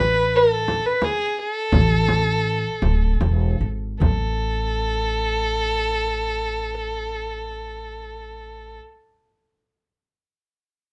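Lightly reverberant and up front, this soulful, hypnotic Arabic maqam ensemble excerpt in 3/4 moves at 72-90 BPM and slows down over its first 4 seconds, with a single bowed violin carrying a smooth, dark, vibrato-rich melody over woody pizzicato upright bass on steel strings, while a deep, close frame drum played with soft hands sounds from 0.7 to 4.4 seconds.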